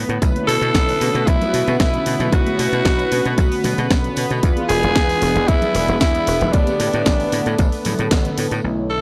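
Nu-disco with a sensual, cosmic mood, this excerpt sets a growling, breathy tenor saxophone up front from 0.5 seconds over mellow, brassy synth brass with chorus and cassette tape coloring, a lush, warbling unison pad in the background, and a punchy, foam-muted thumbed slap bass thickened by tube saturation, all pumping against the kick. A punchy, up-front electronic kick and a house kit with a cracking, filtered snare and muffled hats drive the groove, while a very quiet tambourine and congas sit distant in a large room. The chords move from Bm11 to E7b9 and A9sus4, with a band accent at 8.1 seconds, and the whole recording has a dry, gritty hardware character with light reverb.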